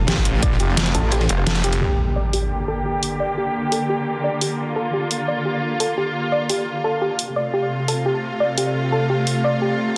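Dark technical drum and bass at 173 BPM in G minor, aggressive and mechanical, where a warm, intimate bowed string section holds sustained chords under a sidechain pump and a filter sweep while a soft, round pluck spins chorused, tape-echoed arpeggios, a metallic wobble bass growls up front until 1.3 s and a snarling, detuned saw bass until 1.8 s, overdriven dubstep drums with a deep snare and rim clicks drive on over a gritty, rolled-off breakbeat kit in the background, and an electronic impact hits at 1.8 s as the chords shift from F to G minor in a dense, heavily limited mix with lush hall reverb.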